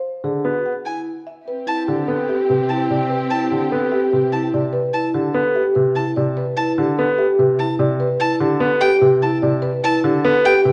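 Meditative yet urgent, this short cut from a longer minimalist classical pattern piece moves at 147 BPM in A minor, shifting from E7 to Am9 at 1.5 seconds. A woody, round marimba carries the melody from the background while a polished grand piano sits up front with accompaniment, a ringing vibraphone with fast motor vibrato spins arpeggios, and a close solo violin adds expressive, bowed arpeggios with portamento. Between 1.5 and 4.5 seconds a dark, distant clarinet plays a second line over lush sustained chords from a symphonic string section, all set in a wet recital hall and colored by worn cassette tape with warbly pitch drift.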